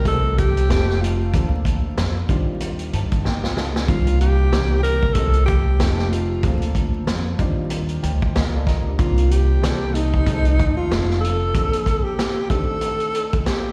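Mellow and cool, this jazz-hop cut from a longer piece sits in 4/4 with a lazy swing on the sixteenths. A breathy, close-miked alto saxophone carries the solo melody up front, its vibrato colored by plate reverb, slapback echo and analog delay. Beneath it, a woody, slightly detuned upright piano with a vintage character and long sustain comps through F7, Bbmaj9, Ebmaj13 and Cm11 chords, adding fills from 2.6 s and 7.7 s. A bright, thumpy pizzicato upright bass with steel strings and a vintage drum kit with a punchy kick, a rolled-off top, a medium-tuned snare and hi-hat drive the groove, and the drums add a short fill. The bass drops out at 11.5 s for a break that settles on a Cm69 chord, while vinyl crackle and the feel of a live gig heard through a venue's PA give the sound a nostalgic patina.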